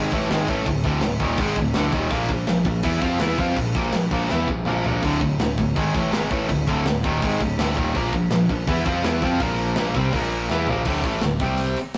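A driving, straight 4/4 pulse at 165 BPM powers this heavy, dark heavy metal passage in D minor, cut from a longer piece. Three guitars play riffs from the start: an up-front, high-gain guitar with bright distortion, an overdriven guitar sitting in the background, and a dark, double-tracked sludgy guitar kept very quiet, which drops out at 10.9 s. Beneath them a growly, direct electric bass holds the low end, while a tight metal kit with a mid-forward, rolled-off sound, medium-tuned snare and tight kick works crash, hi-hat, snare and toms, adding fills at 4.3 s and 10.5 s. The harmony swings between D5 and Bb5 power chords, and a short new section from 10.9 s closes on D5 and C5. A stone-room reverb and tube saturation give the whole a rough rehearsal-room grit.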